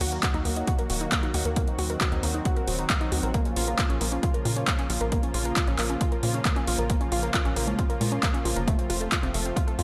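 A straight 4/4 pulse at 135 BPM drives this emotional, driving uplifting trance excerpt in Bb minor, with a punchy, tape-warm electronic kick entering at 0.2 s beneath an overdriven, up-front dance kit of congas, handclaps and metallic hi-hats. A tight, nasal sawtooth sequencer bass pumps against the kick, while a round analog pluck spins arpeggios through chorus and delay over a lush, thick, detuned unison pad that sustains bright chords. The harmony moves from Ebm to Bbm and reaches F at 8.7 s, all set in light digital ambience.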